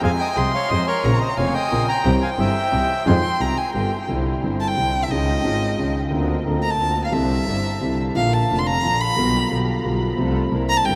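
Sultry and tense, this rubato tango fragment in 3/4 opens with a reedy, dark bandoneon carrying the melody until 3.7 s, while an up-front bowed violin with expressive portamento sings a second line that takes over as a solo from 4.1 s, all over a boxy concert grand piano with long sustain, veiled con sordino string stabs in the background and a focused, bowed double bass, bathed in the huge reverb of a vast, echoing space.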